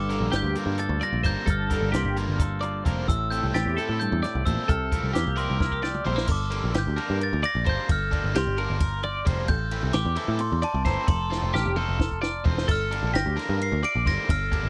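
Math rock with a midwest emo lean, this intricate, restless excerpt moves in a straight 7/8, built on a mellow, bell-like glockenspiel melody with slapback echo over a bright, clean twelve-string electric guitar arpeggio run through a phaser. A twangy, fingered electric guitar supplies clean accompaniment until 6.3 seconds, while a round, foam-muted picked bass sits up front and a double-tracked, biting overdriven guitar riff with spring reverb hangs back low in the mix. A compact cocktail drum kit with a high-tuned snare, tight kick and dark cymbals drives things, throwing in fills around 5.6 and 11.3 seconds, all captured in a dry, close 1970s-style studio sound as the chords shift from Gm9 through Am7 and Fmaj9.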